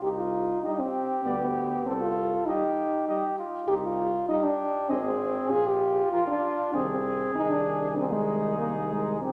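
Heard in a wet scoring-stage reverb, this short, warm and triumphant excerpt of classical brass quintet music in 3/4 at 98 BPM opens with a dark, soft-edged trumpet up front, a close-miked French horn and a clear, distant bass trombone on the low line, before a cornet with light vibrato takes the melody from 0.6 seconds, set back in the blend alongside a smooth-topped trombone, over chords moving from C minor through G/D to A-flat and B-flat.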